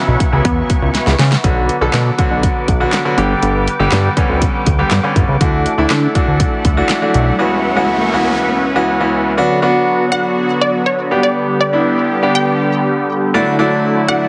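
A straight 4/4 groove at 121 BPM drives this confident, energetic dance-pop excerpt in B minor, where a bright, up-front concert grand piano and an evolving, detuned supersaw swell both pump to the sidechain under a fat analog bass with a moving notch and punchy, layered electronic drums that fill at 0.9 seconds and drop out at 7.3 seconds as an electronic riser builds, before a lush, detuned sawtooth pluck with digital delay carries the melody back in from 10.1 seconds over plate reverb and a heavily compressed, radio-like sound.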